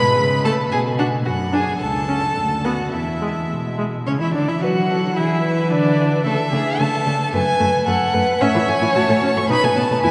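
This is a quick, lively and cheerful classical-period movement for string quartet in 2/4, heard as a short passage cut from a longer piece. The first violin carries the melody high in its register with a rich, focused tone and vibrato, placed up front. Beneath it the second violin plays an expressive second line, warm and soft in attack, with touches of portamento. The viola fills in the accompaniment with a smooth-topped, vibrato-laden sound, while the cello anchors the bass with an even, close tone that sits as far forward as the lead violin. All four bowed parts play throughout the 10.1 seconds, bathed in a wet cathedral reverb with a long 4.5-second tail and a dulled upper end. A new section begins at 4.1 seconds, and the excerpt closes on a B7 chord.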